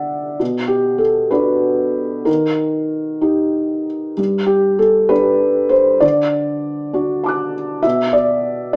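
A felt-muted upright piano plays alone, sounding soft, intimate and boxy, placed up front with audible action noise, in this peaceful, hopeful fragment of neoclassical minimalist piano cut from a longer piece. In G major and 6/8 at 64 BPM, the playing breathes with rubato and uneven beats, spanning G2 to F#6 as the harmony moves from Bm through Eb, G and D back to Bm, with the phrase heard twice across about 8.8 seconds. A wet studio reverb and a small speaker sound give the intimacy of a live room.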